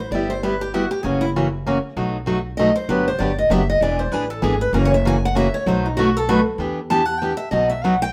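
A 3/4 swing at 195 BPM drives this brief, fiery excerpt of jazz manouche in E minor, its eighth notes given a light swing. Two picked steel-string acoustic guitars sit up front: one carries a virtuosic second line from D#4 up to A5, warm with fresh strings and the squeak of fingers on a concert-sized body, while the other, a dreadnought, supplies the accompaniment between B2 and G#4. Beneath them a pizzicato upright bass on gut strings gives a woody, thumpy foundation from E1 to E2. The harmony moves briskly through G6, F#7, B7, Gmaj7 and E7 before settling onto Em7 at 6.6 seconds and closing on B. A moderate studio reverb lends the trio a sense of shared space, and the guitar solo runs through the full eight seconds of this cut from a longer performance.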